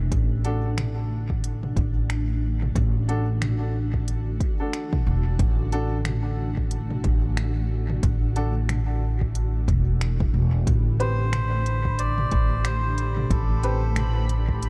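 This hazy, spacious ambient dub fragment opens on a blurred, cloudy granular pad holding sustained chords beneath a growly, woody upright bass that sits up front. An overdriven electronic kick with a deep thump and an overdriven organic electronic kit of finger snaps, smooth hi-hats and toms set a swung groove, the kit trailing dub echo. A clear, open upright piano adds stabs that also repeat through dub echo. At 10.8 seconds a bubbling, detuned sawtooth texture with resonant, random filter steps appears in the background, bathed in chorus, and a reedy, nasal melodica follows with a short melody sent through dub echo. The production is dark and warm, with little room sound, and the passage is cut from a longer piece.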